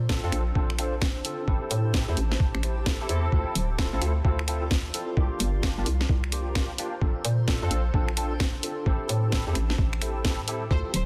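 A dense, heavily limited mix with light reverb carries this skippy, late-night two-step UK garage cut at 130 BPM with a swung 16th feel, as a hollow, bouncy FM bass knocks up front over a gritty, pitched-down kick, cracking snare, hi-hat and finger snaps, while barky electric piano stabs through ensemble chorus and dub echo sit over a cloudy granular pad pumping in the background through Bbmaj9, Am7, Dm7 and C7sus4, before a rich, bowed violin section touches a single C5 at 10.7 seconds.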